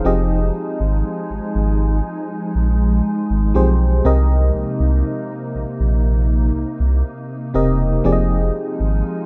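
An FM electric piano with warbling tremolo and a glassy, ethereal FM pad with ensemble chorus open this slow, longing late-night contemporary R&B excerpt in F minor at 60 BPM together, joined by a thick, saturated sub bass sitting up front under Fm7 and Cm7 chords, all in a rough home-demo mix with light reverb.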